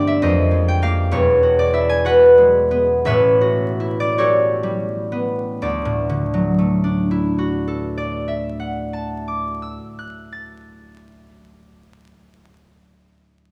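In a rubato 6/8 that slows over the first 5.6 seconds, this peaceful, graceful classical fragment for solo concert harp drifts through Fm11, Eadd9 and A13 before settling on Dadd9. The fingerpicked harp sounds up front, ringing and warm across a span from E1 to A6. A lush recital-hall reverb surrounds it, with vinyl crackle and small-room ambience in this short excerpt from a longer piece.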